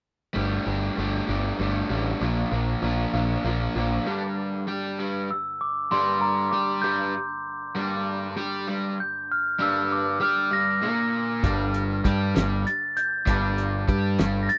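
A mellow, bell-like glockenspiel played with rubber mallets carries the melody from 5.3 seconds in this cool, bittersweet indie rock piece in G minor at 65 BPM in 6/8, set over a dark, up-front overdriven electric guitar riff, a clean, twangy guitar riff with ensemble chorus sitting in the background, and a growling overdriven bass that drops out at 4.0 seconds and returns at 11.4 seconds alongside a dry, cloth-damped drum kit with a fat snare and tight kick, all in a rough home demo mix with light reverb.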